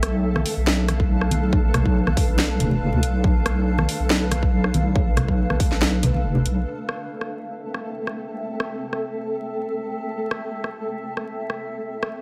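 Deep dubstep at 140 BPM in A minor, this excerpt from a longer piece has a meditative yet heavy mood, riding a half-time feel with a light swing on the 16ths. It opens on a drop, where a deep, soft wobble bass with chorus sits up front, dark and compressed, until 6.7 seconds, joined by a punchy, overdriven electronic kick from 1.0 to 5.7 seconds and low-tuned congas with a thick skin tucked in the background between 0.4 and 6.4 seconds. A garage drum kit with hi-hat, rim click and a cracking snare runs throughout, forward in the mix. Above it all, a granular cloud pad holds blurred, evolving sustained chords with built-in reverb, while a flickering, grainy texture shimmers beneath it. The harmony moves from B diminished to A minor as the second half begins, leaving the pad, texture and drum kit to carry the close. Light reverb and a layer of vinyl crackle give the recording a dusty, hazy surface.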